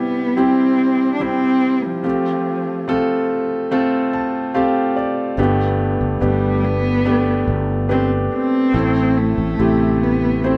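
Pop at 72 BPM in C major, this hopeful, heartfelt fragment sets a dark, woody bowed cello melody with vibrato over intimate grand piano accompaniment, audible action noise and long sustain included, with a piano fill at 3.7 seconds before a growly, amped fretless electric bass enters at 5.4 seconds, all three up front in a moderate stone-room reverb as the band plays live through C, Fadd9, Gadd9 and Am.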